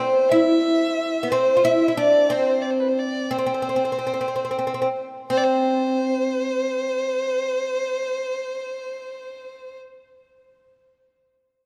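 A rough home demo mix places both instruments up front in a moderate plate reverb with a long tail, in this short, passionate Arabic excerpt in a straight 6/8. A bright, woody oud, fretless and plucked with a plectrum on doubled strings, carries the melody in its low-middle register, while a single bowed violin plays a quieter second line above it with a warm, soft attack, expressive vibrato and gliding portamento. The two play together from the start, moving into a second section at 5.3 seconds before the oud stops at 9.6 seconds and the violin at 9.8 seconds.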